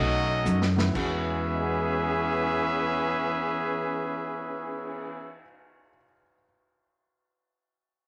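Big band swing bursts out in a joyful, energetic fragment as a clear, up-front trumpet section carries the melody over a mellow, soft-edged trombone line, a woody pizzicato upright bass, a very quiet, clean hollow-body electric guitar, a gritty vintage drum kit with dark cymbals that kicks in with a fill at 0.5 seconds, and a background baby grand piano that lingers alone until 6.5 seconds, all set in a small, lightly reverberant room.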